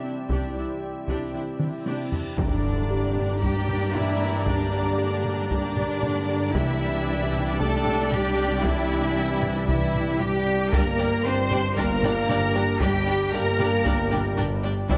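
A taiko ensemble struck with hard sticks drives this vast, brooding hybrid orchestral and electronic film score cue in G dorian at 115 BPM, where bowed strings (clear violins with vibrato carrying the melody over a background second violin line, lush distant violas, rich cellos and double basses) blend with a mellow background French horn section, a deep, warbling vintage ambient pad, a very quiet harp-like ringing synth pluck playing arpeggios, and a huge, dark reverse cymbal and impact landing at 2.4 seconds after a drum fill, all within a moderate scoring stage reverb.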